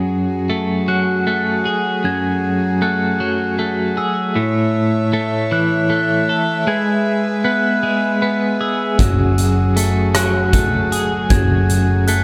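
Rich, bowed chamber strings sustain chords as a clean, compressed twelve-string electric guitar plays arpeggios with tremolo and slapback echo in this brooding, cinematic post-rock excerpt in F# minor at 52 BPM in 6/8; mellow, bell-like glockenspiel arpeggios struck with rubber mallets join at 0.9 seconds, and a dark, round hollow-body bass and a punchy, big-room arena drum kit of kick, hi-hat and rim click enter at 9.0 seconds, as the chords move from F#madd9 through A and E/G# back to F#madd9 within light reverb and small room ambience.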